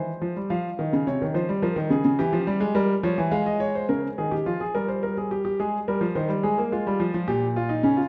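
This is a classical, baroque-style two-part invention for solo grand piano, a brief passage cut from a longer piece that feels both stately and joyful in a straight three-beat metre. The piano plays throughout, from the opening to 8.1 seconds, ranging from Bb2 up to F5. Its tone is clear and natural and sits up front, with an intimate closeness that lets the audible action noise of the instrument come through. A generous recital hall reverb surrounds the playing, and the production leans dark and warm. The harmony moves through minor and diminished colours, with a Db69 and an Edim7 early on, before a new section begins at 3.9 seconds and passes through Gm, Ab and Fmadd9 on its way to a closing Gdim/Bb.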